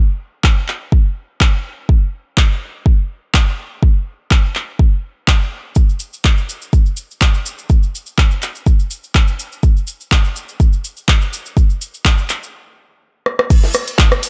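A deep, layered electronic kick and a punchy analog drum machine with handclaps, hi-hat, rim click and crash open this hypnotic house excerpt, both tape-warm and up front with a gentle swing on the sixteenths. A grainy, bright acoustic cabasa joins at 5.8 s, and the groove sits in a small room ambience. At 12.5 s the groove stops, a brief drum fill arrives at 13.3 s, and a very quiet acoustic kit with a medium-tuned snare and hi-hat enters at 13.5 s as the piece is cut off.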